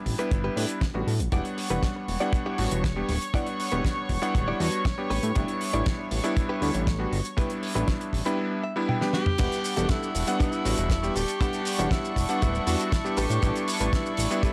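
A dry, gritty hardware recording with small room reverb carries a sensual, cosmic nu-disco groove at 119 BPM in E dorian, moving between Em7 and A9sus4. A tight, up-front kick and a damped 70s kit with a fat snare, crash, hi-hat, shaker and toms sit under a fat, detuned sawtooth analog bass with a filter sweep, while a clangy, chorused electric grand piano comps up front and a bright, picked clean guitar riff, recorded direct, stays in the background. Rich, reedy bowed strings with gut-string tone and sidechain pumping enter at 1.3 seconds. During the guitar and drum fills, a close-miked tenor saxophone melody with vibrato and vintage 12-bit sampler grit enters at 9.1 seconds, just ahead of a drop at 9.4 seconds, in this cut from a longer piece.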